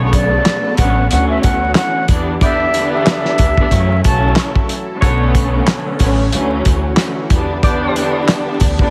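A heavily compressed, radio-like sound with vinyl crackle and small-room ambience frames this short, reflective and gritty boom-bap hip-hop excerpt in B minor at 92 BPM, swung on the sixteenths, where a cloth-damped, thuddy drum kit with a fat snare, tight kick, hi-hat and handclaps sits up front with vintage 12-bit sampler grit, over woody pizzicato upright bass. A lush bowed string section with vibrato and portamento and a very quiet, detuned sawtooth pad carry chords moving from Bm9 through Dmaj9, Em7 and F#m7, while a breathy, close-miked concert flute with tape echo sings the melody until 4.3 seconds. Background touches come from jingly, saturated sleigh bells and a bright, vintage saxophone section punching stabs from 2.4 seconds.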